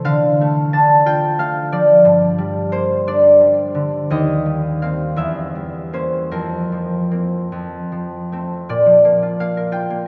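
In a 6/8 at roughly 50-61 BPM by the dotted quarter, with a free, rubato feel, this dreamy and serene classical piece is cut from a longer work for solo concert harp in Bb major. The mellow, fingerpicked harp rings up front across a range from Eb2 to A5, moving from D minor through G minor, Cm7/Eb, a diminished chord and a suspended F before settling on Bb at 8.7 seconds as a new section begins. A wet cathedral reverb with a 5.5-second decay surrounds it, and the room is heard from further back.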